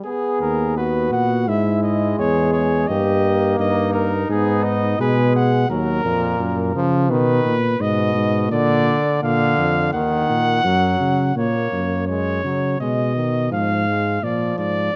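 Classical imitative brass canzona in G# minor at 85 BPM, stately yet lively, where a warm trumpet with light vibrato carries the melody up front over clear trombone accompaniment, a mellow, smooth-topped flugelhorn adds a second line until 5.7 s, and a roomy, distant-sounding tuba enters at 0.4 s to anchor the bass, all set in a moderate recital-hall reverb captured by close, detailed microphones.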